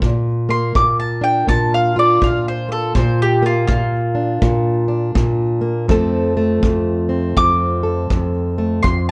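This gritty, laid-back acoustic country blues fragment, cut from a longer piece, swings easily as a fingerpicked plugged-in steel-string guitar with fresh strings and a boxy parlour tone sits up front, moving from Bb to F. A mellow, round mandolin on doubled strings enters at 0.5 s and takes the melody as a picked solo, close and present, while a tight kick drum played with brushes sounds distant and roomy behind them. The production is dark, with moderate studio ambience.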